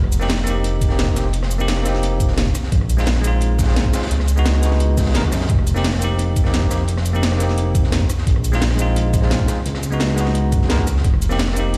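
A straight 4/4 groove at 173 BPM drives this uplifting, lush liquid drum and bass excerpt, built from a produced electronic kit with a cracking snare, metallic hats, rim click and shaker, layered over a dark, saturated breakbeat kit with a high-tuned snare and filtered hats, while a gritty, thumpy sampler-style kick joins at 0.8 s. Up front, a smooth synth bass blending sawtooth and square tones sustains with vibrato between F1 and Gb2, and a bell-like, bright tine electric piano, treated with digital delay, voices suspended ninth chords moving from F9sus4 to Bb9sus4 to Db9sus4. The whole mix sits in a large studio reverb with digital ambience, as if played on a big sound system in a bare room.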